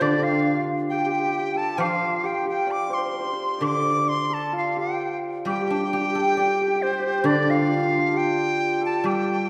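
A free, rubato sway in 2/4 carries this wistful, graceful fragment of a longer Chinese traditional chamber piece, where a pure, reedy large dizi with a buzzing membrane and vibrato sings the melody up front, a shimmering hammered dulcimer rings out a second line beside it, a mellow, silvery guzheng plucked with fingerpicks supplies accompaniment beneath, and a very quiet woodblock ticks in the background, all set in a wet concert hall heard from further back in the room.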